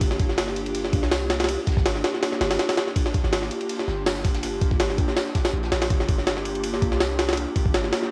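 This short excerpt of raw, frenetic jungle-flavoured drum and bass opens at once with everything in motion: a sampler-style jungle drum kit sits up front, its pitched-up, compressed breaks full of grit, with a thumpy kick, a high-tuned snare, hi-hat and ride cymbal, all coloured by cassette tape and re-recorded in a large room. Beneath it, an 808-style bass supplies deep, boomy sine tones with a fast attack and a decaying tail until 7.9 seconds. An airy, breathy pad holds sustained chords over Gm7, its detuned, mellow layers softened by chorus and tape. Far in the background, a very quiet acoustic breakbeat kit adds a dark, saturated hi-hat and snare with a rolled-off top before dropping away at 5.9 seconds. The sixteenths carry a light swing, and the home cassette recording with gentle reverb gives the whole piece a lo-fi, homemade character through to 8.1 seconds.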